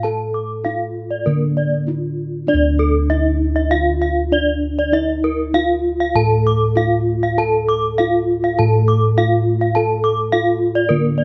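Close, detailed microphones and a light reverb capture this hypnotic, brilliant fragment of Balinese gamelan, cut from a longer piece and moving at 98 BPM in a straight 4/4 in D pelog. A bronze metallophone struck with padded disc mallets carries the mellow, soft, airy melody, its paired tuning producing shimmering beats, while a second, up-front metallophone played with a horn mallet rings out warm arpeggios with a boxy small-room character. Beneath both, round bossed gongs supply a mid-forward, beating bass, and all three parts sound together throughout the 11.2 seconds.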